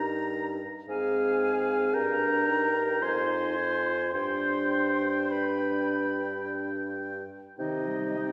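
Set in a slow, rubato 3/4 at 51-58 BPM, this classical wind-quintet movement feels yearning and melancholic, and it is cut from a longer piece. All five instruments sound together from 0.0 to 8.3 s. A silver concert flute carries the melody with an airy, metallic tone, a crisp attack, vibrato and softened highs. A close-miked oboe with a warm glow traces a second line above the accompaniment, while the clarinet, the most prominent voice, and a mellow French horn fill the middle, and a bassoon anchors the bass. The oboe, horn and bassoon each carry a light vibrato. The harmony moves from Eb through Ab, Fm7 and G before settling on C minor at 7.6 s, all bathed in a lush concert-hall reverb.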